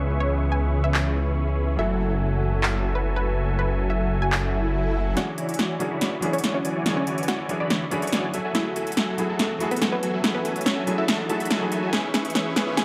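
Lightly reverberant and high-passed, this dreamy, emotional future bass excerpt moves in half-time, setting huge supersaw chords through a low-pass filter that sweeps from 5.2 s into a build-up, over a thick, chorused detuned saw bass that stops at 5.1 s, with an overdriven big-room dance drum kit of handclaps, crisp hi-hat and punchy snare arriving at 0.9 s, a lush unison pluck melody with delay, a soft felt-muted upright piano with audible action noise and delay in the background, a very quiet ethereal airy pad, and a faint electronic swell and riser.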